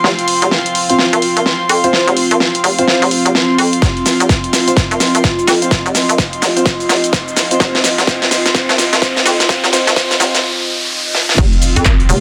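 A dense, heavily limited mix with light reverb carries this bouncy, swaggering bass house build-up at 127 BPM with a swung sixteenth feel, where a hollow, knocking FM bass with overdrive pumps beneath a deep, moody ambient pad with chorus and a distant, earthy chamber string section, boxy grand piano stabs with audible action noise and tape echo move through a filter sweep, the big-room dance kit drives a running fill of cabasa, hi-hat, handclaps, crash and a huge snare, a punchy electronic kick enters at 3.8 seconds, and a very quiet riser from 6.3 seconds lands on an impact at 11.4 seconds.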